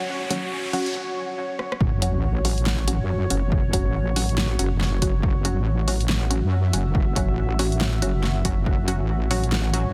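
A half-time 4/4 groove at 140 BPM with a 60% swing on the 16ths drives this heavy, cavernous deep dubstep excerpt in F# minor, cut from a longer piece. It opens on a moody, detuned sawtooth ambient pad holding sustained chords with a slow attack and its own reverb, while a muted, filtered dub chord stab with chorus and dub echo punctuates the space. A very quiet, breathy wind-like noise texture lingers only through the first 0.9 seconds, alongside a riser and sub drop that carry the build-up into a short break and a drum fill. The deep house drum kit, with hi-hat, rim click and a fat, overdriven snare, enters at 0.3 seconds. At 1.8 seconds the drop lands with an impact as a punchy, overdriven electronic kick and an up-front wobble bass arrive, the bass a detuned, compressed blend of sawtooth and sine from F#1 to F#2. Light digital ambience surrounds a dense, heavily limited modern master.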